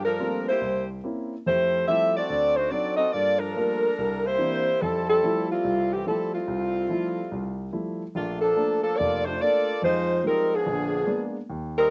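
A swinging 4/4 pulse at 144 BPM drives this brassy jazz passage, cut from a longer piece, with eighth notes given a lilting swing feel. A mellow saxophone section carries the melody from 0.0 to 11.9 seconds, its smooth top and tight ensemble blend placed up front and touched by a slapback echo. Beneath it, a grand piano supplies accompaniment in a lower register, its intimate, natural tone sitting further back in the mix, with the action noise of the instrument audible. The harmony opens in F major on rich extended chords such as Gm11, C7b9 and Fmaj9, then shifts to B-flat major at 8.1 seconds, moving through Bbmaj7, Fm7 and Bb7b9. The sound is dry, captured in open air with little reverb.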